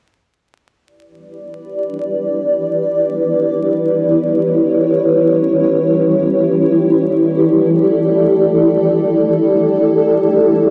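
This drum and bass excerpt is dark and atmospheric, built from a single granular cloud pad that enters at 1.7 seconds and holds sustained chords from Em7 to A7sus4 at 6.7 seconds. The pad sits up front with a cloudy, blurred, detuned character, slow attack and long release, its tone roughened by vintage 12-bit sampler grit and its own built-in reverb. The whole scene is bathed in a wet plate reverb, with vinyl crackle under a dark, warm production.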